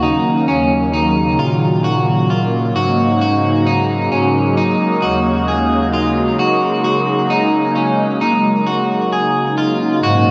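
Soaked in plate reverb with a softened, rolled-off top, this short cut from a longer dream pop piece feels dreamy and blissful, moving from Ebm9 to Ab9sus4 at 2.8 s. Up front, a swirling, detuned sawtooth analog pad holds sustained chords through phaser and chorus with a slow attack and long release. Beside it, a slightly broken-up electric guitar picks arpeggios with subtle chorus and delay, while a mellow bass clarinet carries the bass line in a classical style.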